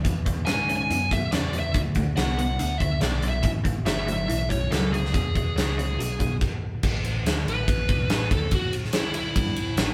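A driving, straight 4/4 groove carries this raunchy, swaggering slice of blues rock and southern rock, cut from a longer piece and played by a band live in one room with moderate studio reverb. A huge arena drum kit sits up front with a fat snare, punchy kick, crash, hi-hat and ride in a big-room sound, joined by a growly, amped electric bass that is picked and overdriven. A bright, double-tracked semi-hollow guitar with a phaser carries the riff over chords moving from E to D5, A7 and back to E, then drops out at 6.4 seconds for a brief stop. A smooth, dark overdriven lead guitar enters at 0.5 seconds, sitting in a higher register above the riff. After the stop, it takes a solo from 6.8 seconds over an A5 chord, with bass and drums driving beneath it to the end.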